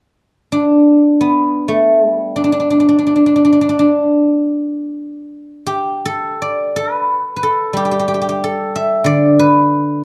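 Chinese traditional solo plucked-string music, pastoral and serene, this short excerpt features a guzheng alone from 0.5 seconds, played with fingerpicks up front in a silvery, ringing voice that spans the low and upper registers. The instrument sits in a moderate recital-hall reverb within a dark, warm production, and a new section begins at 6.4 seconds.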